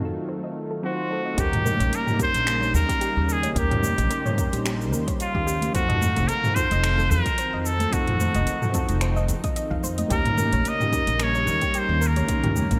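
A bright, 1980s-style digital production with light reverb carries this wistful sunset chillout excerpt at 110 BPM, where soft, mellow electric-piano-like synth keys with chorus and phaser, a lush, detuned unison pad and a dark, round pluck playing arpeggios through digital delay sit in the background over F7b9 and Eb7 chords. Up front from 0.8 seconds, a nasal, breathy trumpet with straight mute sings the jazz-style melody with light vibrato and scooped notes, roughened by vintage 12-bit sampler grit and echoed by digital delay. At 1.4 seconds a woody pizzicato upright bass with tube saturation enters alongside an overdriven deep house kit of finger snaps, metallic hats, shaker and toms with gated reverb and a deep electronic kick, and ringing, high-tuned congas follow at 1.7 seconds in a swung 16th-note feel.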